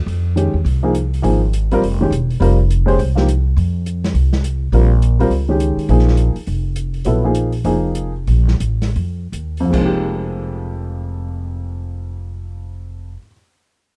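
A dry, close recording in a small room, with a 1970s studio character, frames this short cut from a longer modal jazz piece in F minor. The mood is hypnotic and cool, with a swung 4/4 feel and a tempo that ranges from 144 to 206 BPM before slowing down from 7.1 seconds. Up front, the pizzicato upright bass has a woody, warm tone and steel strings, while the dark baby grand piano accompanies in a mellow, intimate voice, its short sustain and audible action noise adding a natural touch. At a lower level, the open jazz drum kit sounds smooth, with dark cymbals, a medium-tuned snare, a boomy kick and a rolled-off top. The harmony moves from Fm11 to Bbm11 and returns to Fm11. The drums stop at 9.9 seconds, leaving bass and piano to carry the closing bars.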